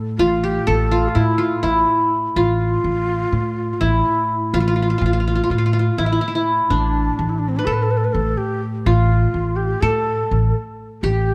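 A fingerpicked, bright-edged qanun carries the melody up front through analog delay over a softly bowed, dark double bass drone on A2 in the background, joined at 0.2 s by a breathy, tongued ney with vibrato and its own delay on a second line and a woody, thumpy pizzicato upright bass, in a longing, hypnotic Turkish makam ensemble passage in 9/8 at 249 BPM (eighths) with light reverb.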